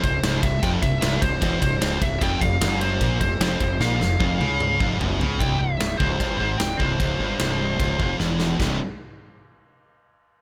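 This heavy metal fragment opens with the full band at once: a dark, high-gain lead guitar carries the melody up high while two distorted guitars grind out a low riff beneath it. One riff guitar is picked with searing high gain, and the other is a sludgy, overdriven part that sits in the background. A round, fuzzy fingered bass fills the bottom, and a big acoustic rock kit stands up front with a punchy kick, medium-tuned snare, bright ride cymbal and toms. The drums break into fills at 3.8 seconds and again at 8.2 seconds, and the lead drops out at 8.1 seconds, just before the rest of the band stops. The feel is aggressive and heavy in a straight four, and the sound is dry, with little reverb.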